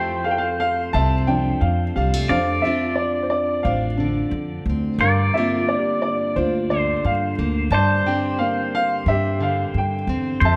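Set in a moderate concert-hall reverb, this excerpt of a melancholic, heartbroken acoustic folk-pop ballad moves at 89 BPM in a straight 4/4 over Fmaj7, Dm7/F, Gm7 and Csus2/G. Up front, a dark, boxy upright piano carries the melody, and a clean, compressed pedal steel guitar played with fingerpicks adds a second line with slide and volume swells. A plugged-in, fingerpicked dreadnought acoustic guitar with finger squeak gives full-bodied accompaniment, a felt-muted upright piano plays soft, intimate arpeggios in the background with its action noise audible, and a woody, thumpy pizzicato upright bass on gut strings enters up front at 0.9 s.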